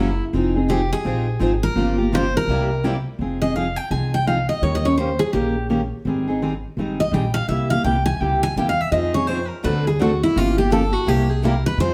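A bright, full-bodied jumbo steel-string guitar carries the bittersweet melody from the start of this swinging gypsy-jazz excerpt in F minor at 168 BPM. Beneath it sit a second jumbo guitar with finger squeak, picking accompaniment, and a woody, thumpy gut-string upright bass plucked up front. A boxy parlour guitar with fresh strings adds background accompaniment until 3.0 seconds and returns at 8.9 seconds, while the lead guitar takes a solo from 3.2 seconds over changes such as Fm7, Eb7 and Abmaj7. The whole group is heard from further back in a studio room with noticeable reverb.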